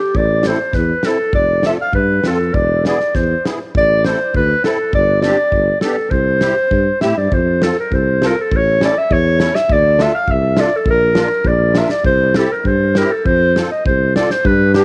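A bouncy, festive alpine folk dance in 2/4 at 101 BPM, played with a rubato feel, moves from C major into F major at 7.3 s. A distant, roomy clarinet carries the classical-style melody up front, joined by a mellow tuba bass with light vibrato and a loose acoustic drum kit of tight kick and medium-tuned snare with a rolled-off top. A reedy, shimmering musette accordion enters at 0.5 s, and the clarinet, drums and accordion all carry the soft grain of a home cassette recording in a small room with light reverb.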